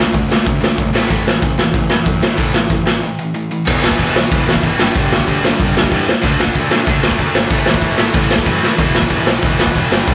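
A raw, small-room sound with light reverb puts the drum kit up front, while two picked electric guitars and a fuzzed bass sit farther back in the mix of this upbeat, rowdy punk rock excerpt, taken from a longer piece. It charges along at 187 BPM in a straight 4/4, tuned slightly flat of standard pitch. The garage drum kit is acoustic and saturated, with a boomy kick, a medium-tuned snare, gritty hi-hat and crash, a rolled-off top and a mid-forward tone. One guitar is crunchy and overdriven with a slapback echo, the other tight, bright and distorted, both driving riffs over power chords moving through D5, A5, E5 and G5, while the growly fuzz bass plays underneath. A break at 3.0 s leads into the second section at 3.7 s, and a drum fill at 8.6 s kicks the progression back toward E5.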